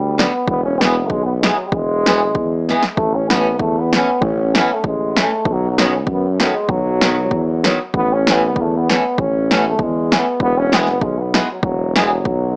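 Alpine folk in the manner of a small alpine dance band, this bouncy, jolly snippet of a longer piece sways along in a swung two-beat feel. A clear euphonium carries the melody with light vibrato and a classical touch, sounding distant and roomy, trailed by a tape echo. Beneath it, a mellow, close-miked tuba holds the bass line, also with gentle vibrato and up front in the mix. A picked acoustic guitar in swing style fills in the accompaniment with a boxy tone and audible finger squeaks. An analog drum machine gives the dance its pulse with a dry, overdriven kick, snare and hi-hat, breaking into a short fill from 2.7 to 3.0 seconds as the harmony moves from E to A, then on through B and back home. The whole band sits in a moderate studio reverb with a small-speaker character.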